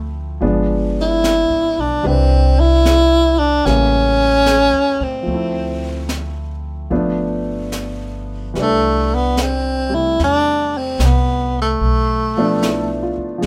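A breathy tenor saxophone carries the melody up front from the first moment, with vibrato, subtone and scooped notes, over a clear concert grand piano with short sustain and a woody, thumpy pizzicato upright bass, before a brushed jazz kit with a high-tuned snare and hi-hat enters at 0.4 seconds. This late-night, intimate jazz ballad in C major moves at 74 BPM in 4/4 with swung eighths, its harmony passing through G7b9, Cmaj9, A7b9, Dm7 and G9 before the opening phrase returns at 8.6 seconds. Light reverb places the small group close together, and the saxophone stops at 13.2 seconds, shortly before this cut from a longer piece ends.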